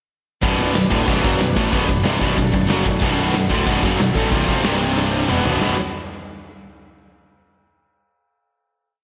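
A tight, bright distorted guitar sits up front with a power-chord riff in this short, heavy and epic metal piece at 185 BPM in 4/4, set in B phrygian and moving from Bm to C5 and back to Bm. A second high-gain guitar stands further back, layering its own power-chord riff with slapback echo on the front guitar. A growly, fuzz-laden picked bass drives eighth notes beneath them, doubling the guitar riff. The big acoustic rock kit is up front with a punchy kick, medium-tuned snare, crashes, splashes and toms in a stone-room metal drive groove, while a very quiet pipe organ holds thick, romantic sustained chords from 0.4 seconds. A drum fill at 5.0 seconds leads into a final chord at 5.6 seconds, all wrapped in a lush hall reverb that gives a big arena sound, with some lossy compression artefacts audible.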